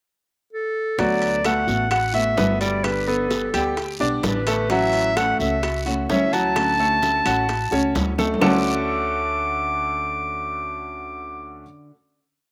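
Relaxed and sunny, this Cuban son and guajira piece in D major moves at 129 BPM: a soft-attacked, up-front clarinet sings a motif-based melody with slapback echo over a brilliant grand piano montuno in octaves, fingerpicked and strummed nylon-string guitar with muted slaps, and a thumpy, woody pizzicato upright bass tumbao that anticipates the chords, while background bongos, ringing timbales, vintage claves and a raspy guiro play until a drum fill leads them out at 8.5 s, leaving the melodic instruments to hold a final Dmaj7 chord.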